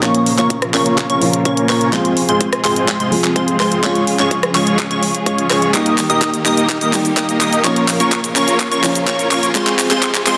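Emotional and anthemic, this short festival progressive house build-up at 126 BPM in straight 4/4 pumps every melodic part against the beat, with a huge, thick detuned supersaw riff up front under a sweeping filter, a catchy plucky lead running high phased arpeggios with delay, a soft felt-muted upright piano with audible action noise, and bright bowed strings held in the background under their own filter sweep, all over a punchy layered electronic kick and an up-front pop kit of hi-hat, handclaps, rim click and cabasa playing a drum fill throughout, moving through Bbm, Fm, Db and Eb in a lush hall before a barely audible riser enters at 9.0 seconds.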